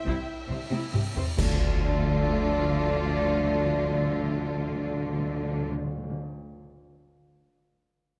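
Cut from a longer cinematic orchestral score in D minor at 68 BPM, this dark, relentless passage opens with two bowed violin sections (one distant and expressive in the background carrying the melody, the other smooth and even on a second line), a lush, focused viola section and mellow French horn chords over rich cellos, a warm double bass section and a distant, roomy tuba, while a taiko ensemble with hard sticks plays through the first 3.1 s and a huge, bright cymbal swell enters at 0.4 s until, at 1.4 s, the harmony moves from C to D minor and clear, very quiet trombones, soft-attack trumpet stabs, dark clash cymbals with concert bass drum and round, soft-mallet timpani join under light reverb.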